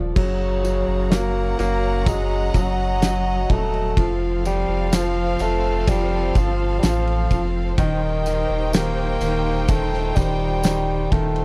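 Dry, with little reverb, this hopeful, emotional pop ballad excerpt opens on a drum fill before a distant, lightly vibrato bassoon takes the melody from 0.2 seconds over a round, deep sine sub bass and a clear concert grand piano with audible action noise. In the background, a dark, woody string section sustains lush chords, while a focused, close violin section plays a second line. The loose indie drum kit brings a fat snare, punchy kick and pumping room sound, with a jingly tambourine tucked behind as the harmony moves from Gb to F to Cm/Eb.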